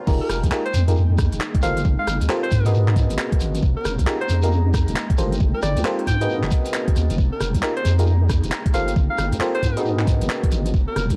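A skippy two-step garage groove swings its sixteenths at 135 BPM, driven by a knocking, tape-warm electronic kick up front and a layered garage kit of crisp hats, handclaps, rim clicks and crash cymbal, re-recorded in a large room, with a grainy, close shekere tucked underneath. A deep, dark wobble bass with chorus sits up front with the drums. Glassy FM electric piano stabs with a bell-like attack, chorus and tape echo cycle through Fm11, Gm11 and Abm11, while an airy, breathy pad holds very quiet sustained chords from 0.6 seconds. A blurred granular cloud pad drifts in the background with its own reverb and sidechain pumping. Over this late-night bed, a bright, punchy alto saxophone solos in a forceful jazz style with vibrato, and the whole excerpt carries a dry, gritty sound with transformer saturation and vinyl crackle.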